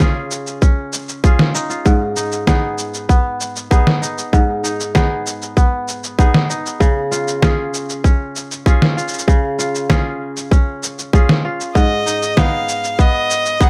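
Lightly reverberant and intimate, this autumnal folktronica excerpt at 97 BPM in G# dorian sets crisp, ringing fingerpicked kora arpeggios, washed in plate reverb and delay, over a tight overdriven electronic kick and a muffled, fat, pitched-down snare with cabasa, all up front as the harmony moves between C# and G#m, until a single bowed violin enters at 11.8 s with a warm, expressive vibrato, a soft attack and portamento.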